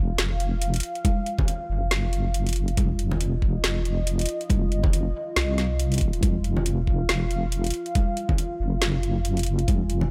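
A dry, close-sounding mix carries this heavy, dark deep dubstep passage in a swung, half-time 4/4 feel. A deep, saturated wobble bass with a detuned sawtooth edge and chorus sits up front beneath a moody, full-bodied analog pad of slow-attack sustained chords. A garage drum kit with a woody snare and metallic hi-hats starts at 0.2 s, and a knocking electronic kick and hard-handed acoustic congas steeped in dub echo join at 1.0 s.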